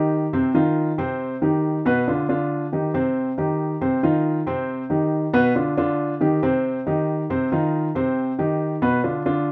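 A moderate studio reverb with a short 0.5-second decay gives this recording a natural, close sound, with a baby grand piano placed up front. It is a short Latin excerpt in C minor at 138 BPM in a straight 4/4, with a nostalgic yet danceable mood, tuned to A4 = 439 Hz. The warm piano plays solo from 0.0 to 9.5 seconds, ranging from B2 to C5. Its harmony cycles through F5, Cm, G5 and back to Cm, returning to the home chord between each of the other two. The passage is cut from a longer piece.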